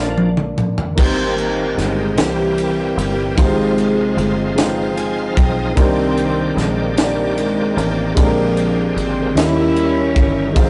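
Soulful and reverent, this slow gospel passage in a straight 6/8 is cut from a longer piece. A deep-voiced concert grand piano and a bright, shouting tonewheel organ, lightly overdriven through a slow rotary speaker with chorus vibrato, carry the harmony from the opening moment, while a punchy, foam-muted fingered electric bass holds the low end. A tight funk drum kit, up front with a high-tuned snare and a tight kick, comes in at 0.2 s with a fill, setting the pumping small-room sound of the kit. At 1.0 s a soft-attack studio string section takes the melody, bowing sul tasto in a pure, floating ensemble tone over rich chords such as Abmaj9, Fm9 and Cm9 before a closing turn through Bb13 to Eb7b9. Piano and organ both add fills at 4.6 s, and the whole take has the rough, saturated feel of a rehearsal-room recording with a moderate studio reverb.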